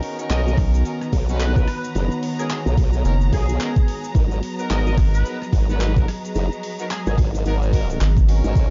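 Swung sixteenths at 109 BPM drive this playful, funky glitch hop excerpt in G# minor. A knocking, overdriven electronic kick and a gritty, pitched-down boom bap sampler kit of handclaps, hi-hat and rim click sit over a rubbery square bass and an up-front formant-sweep wobble bass. A tearing sync lead carries the melody from 0.3 to 7.1 seconds alongside lush, sidechain-pumped string chords, distant jazz-style horn stabs with delay, a warbling tape-like pad and a grainy cabasa in the background, all resting on a G#m9 chord in a dark, dry mix.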